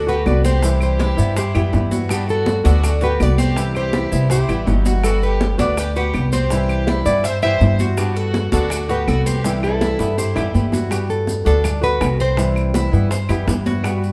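A straight, danceable son and guajira groove rides on grainy maracas and on ringing high-tuned congas, round low-tuned bongos and woody claves set back behind a dark, thumpy pizzicato upright bass up front, with a fill arriving at 10.0 s. A fingerpicked nylon-string guitar carries the sunny melody with audible finger squeak, while a floating, sul tasto violin section plays a soft second line until 10.7 s. A bright, metallic tres spins arpeggios over a dusky fingerpicked flamenco guitar's accompaniment through gently cycling major-seventh and ninth chords, all in the moderate reverb of a large studio in this excerpt from a longer piece.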